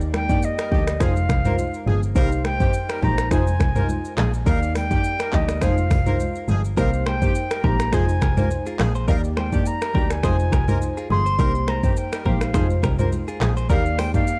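Sultry and hypnotic, this afrobeats excerpt at 104 BPM cycles through Ebmaj7, Fm7 and Cm7 as a reedy, airy concert flute with tape echo carries the melody over a tight horn section, a glassy, crystalline wavetable pluck with chorus, a bowed double bass with vibrato, an up-front produced drum kit with deep kick, smooth hats, snaps and shaker, high-tuned congas in the background, and a twangy, compressed clean electric guitar riff with tremolo that enters at 6.8 seconds, all in a dry, close sound.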